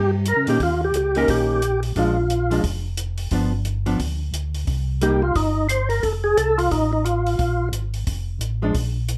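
A percussive tonewheel organ carries the melody up front, lightly overdriven with key click, second-harmonic percussion, chorus vibrato and a slow rotary speaker giving it a full, warm voice; it plays a phrase from the opening and returns with another at 5.0 seconds. This greasy, bluesy soul jazz organ trio moves at a brisk 177 BPM in 4/4, swinging its eighth notes. A second tonewheel organ holds down the bass for the whole passage, round and mellow, clean and dark, also up front with chorus vibrato and slow rotary. A compact cocktail drum kit enters at 0.3 seconds, its hi-hat and punchy kick sitting softly in a small acoustic room with a smooth, shadowy tone. A miked, amplified hollow-body archtop guitar adds clean, picked accompaniment, while moderate club reverb frames the trio over changes that move from Eb7 through Bb7, G7, Cm7 and F to a Bb7 with its third omitted in this excerpt cut from a longer piece.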